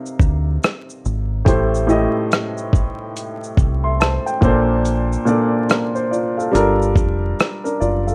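Lo-fi hip hop at 71 BPM in 4/4, swung on the sixteenths, this short cut from a longer piece feels melancholic and hazy. A woody upright piano sits up front playing the accompaniment, its tone softened by a low-pass filter as it moves through Cm9, Am7, Bbmaj9 and Gm9. A sampler-style soul drum kit of hi-hat, thumpy kick, rim click and shaker comes in at 0.1 seconds, compressed and overdriven with a gritty 12-bit character. A deep dub fingered electric bass joins at 0.2 seconds, dark, round and punchy, sitting close in the mix. Light reverb and a layer of vinyl crackle give the whole a dusty, lived-in atmosphere.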